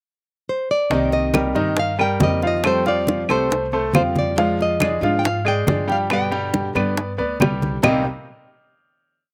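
A fingerpicked nylon-string guitar opens this danceable, sultry Cuban son and guajira piece with a warm, motif-based melody in a pickup bar, and at 0.9 s the band arrives: a second nylon-string guitar strummed with muted slaps, an up-front grand piano playing a brilliant, polished montuno in octaves, and a dark, thumpy gut-string upright bass whose pizzicato tumbao anticipates the chords. Round, low-tuned bongos played with hard hands alongside a hand bell sit close and dry, thin-skinned congas with slaps and open strokes stay in the background, and woody, vintage-sounding claves join at 1.3 s with a two-bar time line. The verse moves through Cm7, Fadd9, Ddim/F and G before settling on a final Cm7 chord, heard under light reverb in an open-air recording.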